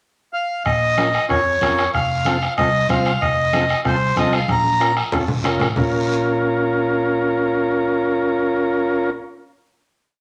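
Cumbia in a fiery, driving whole piece: an up-front, reedy accordion states hook phrases from 0.3 s to 4.9 s over clean combo organ triads with heavy vibrato, an amped fingered electric bass playing a cumbia figure, a vintage, band-limited bombo with soft beater and rim, ringing congas in the background, and a raspy guiro, with the percussion stopping at 5.8 s after a drum fill from 4.5 s while organ and bass carry the final chord in a wet studio reverb.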